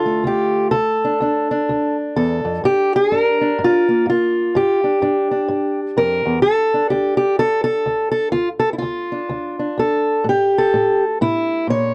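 A fingerpicked steel-string acoustic guitar, dark and boxy with a parlour character, sits up front in this soulful, brooding country blues fragment, swinging in 4/4 through Dm and Gm before a chordless stretch at 6.4 seconds that moves to A7 at 10.2 seconds, all captured in a dry, close 1970s-style studio sound with light reverb.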